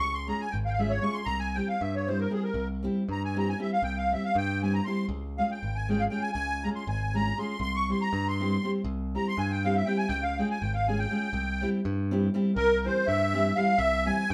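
A live band fills a moderate stone room with a natural reverb, every part sitting up front in this fiery, bittersweet Balkan wedding-band piece in 5/8, cut from a longer performance and speeding up throughout. A reedy, shimmering musette accordion carries the melody as a solo until 12.6 seconds, over fingerpicked classical nylon-string guitar and a bright, direct picked electric bass, while the harmony alternates between Db and C. A brief new section arrives at 12.6 seconds and runs to the end at 14.3 seconds.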